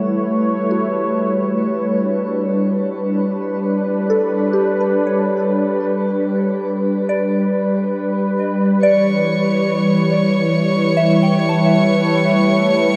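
Serene and softly glowing, this ambient excerpt drifts at 70 BPM in a straight 4/4, centred on G Lydian. A smooth, detuned sawtooth pad sits up front with sustained chords and a soft attack, thickened by chorus and shimmer reverb. Over it, a pure FM synth bell spins gentle arpeggios with fast-attack, decaying notes, colored by chorus, phaser, a diffuse ambient delay and shimmer reverb. At 8.8 seconds the harmony moves from G to E minor as a chamber violin section enters, bowing an intimate sul tasto texture with light vibrato and a smooth top, also bathed in shimmer reverb. An A7 chord arrives at 12.2 seconds, and the whole excerpt breathes within a vast, echoing cathedral space.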